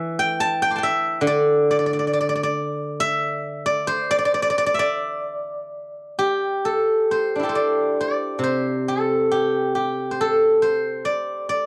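A steel-string zither opens the recording alone, its fingerpicked notes ringing out with a silvery, up-front presence. This is a short passage of traditional Chinese solo plucked-string music, serene and pastoral in mood, taken from a longer piece. The playing moves with a free, rubato feel over an underlying 4/4 metre, ranging from C3 up to D6. Around 6.6 seconds the music passes into a second section, which carries on until the close at 11.7 seconds. A moderate studio reverb surrounds the instrument, while the cassette tape coloring and home-recorded character give the sound an intimate, slightly worn quality.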